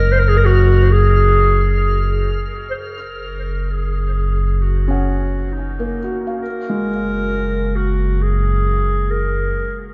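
Serene and weightless, this ambient excerpt rests on a deep, ominous drone that rumbles up front with a dark, nasal edge, while a twinkling granular texture sparkles in the background until 2.8 seconds. A mellow, distant clarinet carries the melody alongside soft arpeggios from a felt-muted upright piano with audible action noise, both fading in from 2.8 seconds and both touched by dub echo. The echo-heavy mix sits in a moderate spring reverb, and the harmony settles onto a major-ninth chord at 6.4 seconds.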